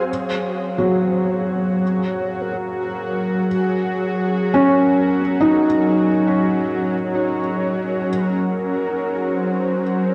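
A slow, straight 4/4 pulse at 52 BPM sets a serene, weightless ambient mood in G♭ major, resting on a single G♭maj7 chord throughout this short section of a longer piece. An ethereal, airy pad drifts in the background with ensemble chorus and its own reverb, and fades in from 0.1 seconds alongside a velvety synth lead that carries the melody with chorus, delay and gentle vibrato. Up front, a bright, nasal, string-like drone with vibrato holds its tense, bowed-like tone beneath them. From 0.8 seconds a felt-muted upright piano plays soft, boxy arpeggios with delay, its intimate sound carrying audible action noise. The whole recording sits in a vast cathedral reverb with a 6.7-second decay and has the worn, warbling character of old cassette tape, with drifting pitch and a dulled top end.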